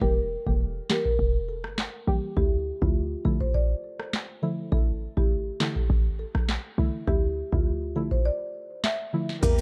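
Dancehall with a tough, bouncy feel, this excerpt sets a woody rosewood marimba melody with analog delay and soft, nasal chord stabs treated with chorus over a punchy, tight 808-style bass and a booming analog drum machine up front, with a deep kick, crisp snare, handclaps, metallic hi-hats, rim clicks and crash, in a dark production; after a break at 8.3 seconds, a lush bowed string section with sidechain pumping and bright maracas join at 9.4 seconds.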